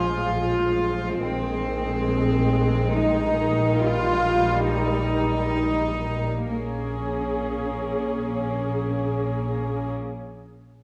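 Cinematic suspense film score, eerie and mysterious, moving at a slow 68 BPM in 3/4 in Bb dorian, cut from a longer piece. Bowed string sections sit up front and play sul tasto throughout: a dark, woody viola section with vibrato carries the accompaniment, while a rich cello section with a soft attack and a pure, floating quality shares the low end with a double bass section holding Bb1. Behind them, a thumb-plucked Celtic harp adds a ringing, acoustic texture in the background until it stops at 6.5 seconds. The harmony shifts over a Bb foundation, from a Bb7 voicing through Ab and Eb over Bb, settling on Bbm7 at 6.5 seconds as the second section begins. A recital hall reverb lends the ensemble a wet sound with a lush, symphonic weight.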